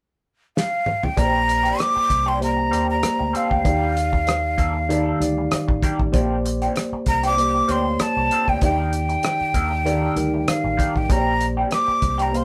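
A breathy, chiffy jazz flute carries the melody up front as a damped, dry 1970s-style drum kit plays a fill at 0.6 seconds, and at 1.2 seconds a worn, slightly out-of-tune tine electric piano, a round, foam-muted fingered bass and a slightly broken-up wah guitar riff through a small old amp join in, settling into a lush, romantic 97 BPM soul groove in Bb major with a light sixteenth-note swing, alternating Bb69 and Ebmaj7 chords in the moderate ambience of a band playing live in one room.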